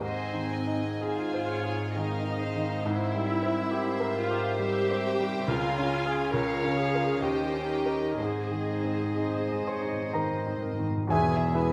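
Passionate and lush, this romantic movement for piano and orchestra unfolds in a rubato triple metre, cut from a longer piece. A clear, polished baby grand piano sits up front carrying the melody across a broad span, while a symphonic violin section also carries the melody in a close, floating sul tasto tone and a studio violin section with a smooth top adds a second line. Beneath them, a woody viola section with vibrato fills in the accompaniment, a dark French horn section holds soft-edged chords in the background, and a distant cello section supplies the bass. The harmony moves from Ab through C7/Ab, Db, Bbm/Db and Eb7 before returning to Ab at 8.2 seconds, where timpani struck with hard mallets begin an articulate, dry fill. A roomy solo clarinet adds a brief second line from 9.2 seconds, and a rich, very quiet double bass section enters at 11.1 seconds on an E chord, all set in a moderate scoring-stage reverb.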